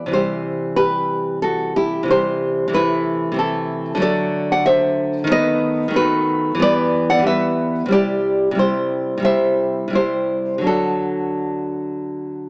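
A small-speaker sound with light reverb frames this tender, nostalgic romantic excerpt for solo classical guitar in 4/4, its rubato feel drifting between 81 and 97 BPM as a fingerpicked nylon-string guitar, up front with fresh strings and audible finger squeak, spans C3 to F#5 and moves from C through Am/C, D, B7/D#, Em, back to C and on to D at 10.7 seconds before the 12.5-second cut.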